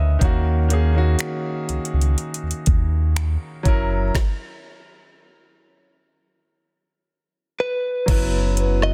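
Contemporary R&B at a slow 61 BPM in 4/4, moody and sensual, cut from a longer piece: a clear, intimate grand piano with audible action noise carries the D#m7 and F#7 chords over a deep, sine-like sub bass with octave and an up-front electronic drum kit of knocking kick, woody snare with soft clipping, metallic hats, finger snaps, rim click and crash. The band stops from 4.1 to 8.1 seconds, and near the end a warm, direct-recorded clean electric guitar enters with a picked melody at 7.6 seconds, followed at 8.1 seconds by a hollow, flute-like pad with chorus and sidechain pumping sitting in the background on an F#7sus4. Digital ambience and a dense, heavily limited modern master frame the sound.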